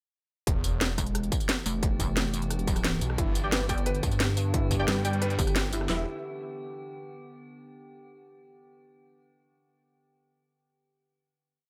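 Dark technical drum and bass, tense and brooding, that launches straight into a drop at 0.5 seconds and runs to a closing chord at 5.9 seconds. Two electronic kits drive it: a tight, up-front drum and bass kit with a cracking snare, crisp closed hats, rim clicks and tambourine, and a tape-toned dubstep kit with a distorted broken-beat kick, a huge snare and handclaps. Two bass parts fill the low end, one a swirling, thick detuned saw bass with phaser and overdrive playing chopped, pumping phrases, the other a heavy pulsing pluck wobble bass with chorus and changing wobble speed. Behind them an eerie, metallic, inharmonic drone holds sustained chords with a slow attack and long release. From 3.2 seconds a soft, felt-muted upright piano with audible action noise repeats an eight-step arpeggio through tape echo, and from 3.4 seconds bold, punchy orchestra-hit-like stabs in sparse power voicings echo above it. 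The mix is dry, and the harmony moves from E minor to G before landing on an E power chord.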